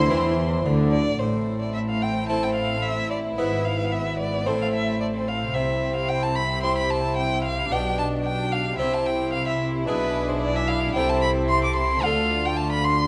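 Classical baroque-style concerto movement in 4/4, festive and lively, heard in a short passage cut from a longer work. An up-front solo violin, expressive with portamento and a soft attack, carries the melody alongside a very quiet, lush violin section that also plays the melody, while a sul tasto chamber violin section supplies an intimate second line and a background viola section and airy, round French-style harpsichord fill in the accompaniment. A dark, woody cello section and a distant, intense double bass section anchor the bass through a progression moving from C through Am and E/G# toward Dm, all set in a recital hall reverb with a 1.7-second decay.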